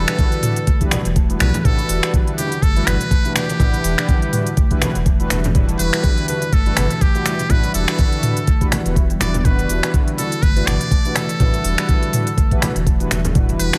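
Afro house at 123 BPM in E minor, with a spiritual, earthy mood and a 16th-note swing, resting on a single Em7 chord through this short cut from a longer piece. A knocking electronic kick sits up front beside a deep, round sine sub bass and smooth-hatted afro-pop kit with finger snaps, shaker and toms, while very quiet ringing congas and a woody soft-mallet marimba playing arpeggios join in, the bass and marimba both pumping to the sidechain. Dark, detuned synth brass stabs with chorus and dub echo support a buzzy, close-miked muted trumpet melody with scooped notes and light vibrato, also echoing in dub fashion, all in a dry space with little reverb.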